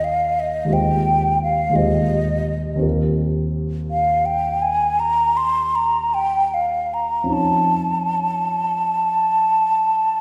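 A wet scoring-stage reverb with a 1.5-second decay surrounds this short passage from a longer piece, and the duo is heard from further back in the room. It is an impressionist classical miniature for flute and grand piano, luminous and pastoral in mood, moving in a rubato 12/8 at roughly 47-58 BPM counted in dotted quarters. The concert flute carries the melody between Eb5 and C6, sitting up front with an airy, hollow tone, vibrato and a soft attack. Beneath it the concert grand supplies dark, smooth accompaniment from Eb2 to C#5, with deep bass, a vintage character and short sustain. The harmony drifts from Eb6 through Fm9/Eb and Eb69 before reaching Faug7 at 7.3 seconds, and both instruments play together across the full 10.2 seconds.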